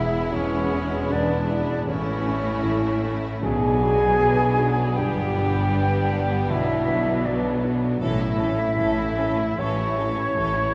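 Cinematic orchestral music at 78 BPM in A major, tender and hopeful, moves with a rubato feel through a brief passage cut from a longer piece, bathed in the wet reverb of a church. A focused, vibrato-rich violin section carries the melody while an airy, close-miked flute, a mellow, distant cor anglais and a lush second violin line add second lines. Beneath them a very quiet viola section, a softly ringing harp, a concert grand piano with deep bass and short sustain, dark French horn chords, and smooth cellos and double basses fill out the accompaniment.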